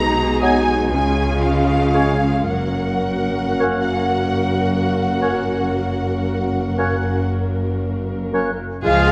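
Classical slow romantic movement for symphony orchestra in F# major, tender and rubato in 12/8 at 36-41 BPM, where a dark, woody violin section carries the melody over a second violin line with expressive portamento, focused violas, a tight French horn section holding sustained chords, smooth cellos and double basses on the bass, and, entering at 0.4 seconds, a warm solo oboe along with an airy flute ensemble, clarinet and mellow bassoon in the background, all bathed in a wet concert hall reverb and the warbling pitch drift of worn old cassette tape as the harmony moves from G#m7/B through C# to rest on F# at 2.5 seconds in this short excerpt cut from a longer piece.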